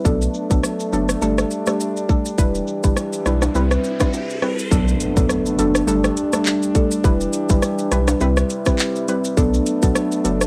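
A bouncy dancehall groove in 4/4 rides on swung sixteenths, driven by an electronic island pop drum kit with a tight kick, metallic hi-hats, handclaps, rim clicks and shaker, sitting tape-saturated and up front. A deep sub bass with an added octave holds down the low end with full, sustained sine and triangle tones, while close, dry maracas and timbales add hard-handed acoustic color underneath. A soft, round pluck, mellow and chorused with a noise layer, ring modulation and a filter sweep, carries the accompaniment over a looping Bm7, Gsus2, Em7, Cmaj7 progression. A classical-style brass ensemble sustains chords with light vibrato, pumping under sidechain compression through plate reverb and cassette grit. An electronic riser builds from 3.1 seconds into an impact at 4.7 seconds, marking the shift into the second section of this tough, lo-fi home cassette recording, cut from a longer piece.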